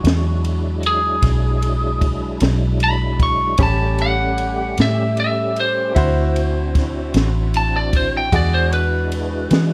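In a slow 12/8 blues at 51 BPM with a straight feel, this swaggering, soulful excerpt sets a twangy, slightly broken-up lead guitar soloing up front from F#4 to C#6 over E9, A9 and D9 chords, backed by a round, foam-muted fingered electric bass, a compact cocktail drum kit with punchy kick, high-tuned snare and ride cymbal, brilliant grand piano accompaniment, and a reedy tonewheel organ holding sustained chords through a slow rotary speaker with chorus vibrato and key click, all under light reverb.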